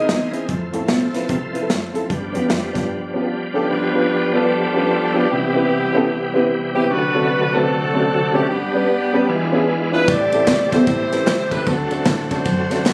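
Uptempo gospel at 150 BPM in a swung 4/4, reverent and jubilant, where a woody upright piano and a shouting tonewheel organ with fast rotary speaker and key click carry the harmony throughout, a bowed, distant cello and a punchy acoustic drum kit play the opening before dropping out and returning at 10.1 s alongside background tambourine and group handclaps, and a clear, up-front saxophone section takes the melody from 3.5 s, the whole mix sounding as if captured on a phone in a large reverberant room.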